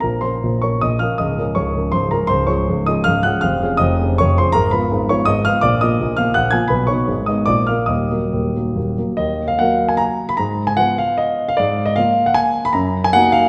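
A solo concert grand piano opens this capricious, wistful romantic dance in 3/4, played with dotted rhythms and free rubato at 132-175 BPM, starting in Bb minor before turning toward Eb minor from 4.6 s. The instrument sounds warm and up front, with deep bass and short sustain across a range from Db1 to Ab6, set in a wet recital hall with a 1.7-second reverb that places the listener further back in the room. A new section begins at 9.2 s, and this excerpt from a longer piece ends at 13.5 s.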